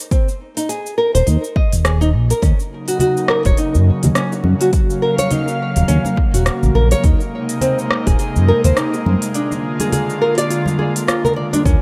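Earthy organic downtempo cut from a longer piece, with up-front fingerpicked nylon-string guitar arpeggios carrying tape echo over a crisp, tape-warm electronic kit of cabasa, hi-hat and rim click and a deep, overdriven electronic kick, joined at 1.1 seconds by a dark, gliding synth bass with sidechain pumping, then by a breathy, detuned pad with chorus and by bright, dry congas and bongos in the background, until the kick drops out at 9.3 seconds, all set in a light reverb.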